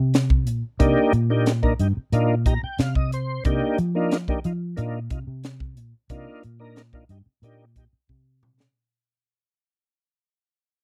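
A dry, close 1970s-style studio sound frames this slick, nocturnal electric jazz fusion fragment in C minor at 91 BPM, sitting on a Cm9 chord as it fades out across its roughly 8.8 seconds. A dark, foam-muted fingered bass with a round punch and a crisp drum kit with a high-tuned snare and punchy kick drive the straight 4/4 groove. A smooth tonewheel organ colored by chorus vibrato and a slow rotary speaker enters at 0.8 s, plays a fill from 2.1 to 3.5 s, and a drum fill closes things at 8.1 s.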